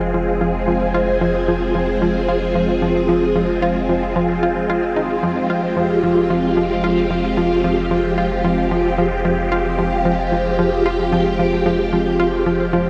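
From the opening moment, a swirling, vintage string machine holds sustained chords up front, its bright sawtooth tone colored by ensemble chorus, phaser and shimmer reverb as it swells in with a slow attack. Alongside it, an analog pluck plays a riff in a round voice that blends sawtooth and square waves with a sub octave, its filter pluck giving each note a fast attack and short decay. That riff is carried on chorus, tape echo and its own shimmer reverb, sitting a little lower in the mix than the strings. Beneath both, a deep sine sub bass sustains a single low note, mellow and quietly present. The whole passage rests on one chord inside a huge, wet ambient reverb with a long tail, giving this cosmic, expansive stretch of sequencer-driven space music a floating steadiness until it stops at 12.9 s, cut from a longer piece.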